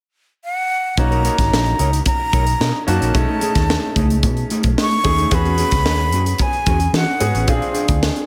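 A breathy jazz flute opens alone at 0.4 s, its soft attack, gentle vibrato and lifted highs carrying an expressive melody through a touch of delay, upfront in this upbeat, urban slice of polished 1980s jazz-funk pop at 111 BPM in B major. At 1.0 s the full band arrives with a straight 4/4 groove: a crisp fusion drum kit with a punchy kick and high-tuned snare sits forward in a small, pumping room, its gated reverb giving the hits a tight, snapping tail. A vintage muted fingered electric bass, dark, round and amped with a foam-muted thud, anchors the low end. A clear grand piano supplies natural-sounding accompaniment bathed in lush chorus, while a mellow, clean electric guitar plays a fingered riff with a subtle chorus shimmer. The harmony moves from Bmaj9 to B13, then E69 and A#9, all set in light studio reverb in this short cut from a longer piece.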